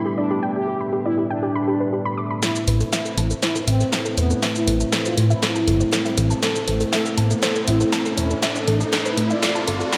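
A brassy, bold analog synth lead carries the melancholic melody in this driving melodic techno excerpt at 120 BPM in A minor, set over a deep, moody pad, a soft, round pluck arpeggio with a warbling vintage character, and a resonant, evolving drone in the background, all on a G chord before shifting to Amadd9 at 2.4 seconds. There a punchy analog drum machine, re-recorded in a large room, arrives up front with a punchy snare alongside a very quiet, gritty low-tuned acoustic kit, a fat, saturated sawtooth bass enters at 2.7 seconds, and filter sweeps on the arpeggio and polysynth drive a build-up with a drum fill. A background riser joins at 5.5 seconds, and the whole mix is dreamy and soaked in a lush hall reverb.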